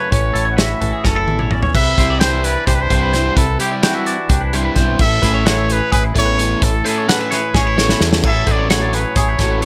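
A smooth-topped trumpet with vibrato sings the melody over two clean, twangy electric guitars, one picking chordal accompaniment and the other spinning phaser-tinged arpeggios, in this playful, sunny math rock and midwest emo passage in 7/8. A growling, overdriven fingered bass and a loose, punchy indie drum kit with dark cymbals join almost at once, with drum fills at 1.0 and 7.5 seconds. A double-tracked, overdriven guitar riff soaked in spring reverb arrives at 2.0 seconds, as the harmony moves from F#m7 through Cmaj9 and Amaj7 to F#m9/A in a close, fairly dry mix.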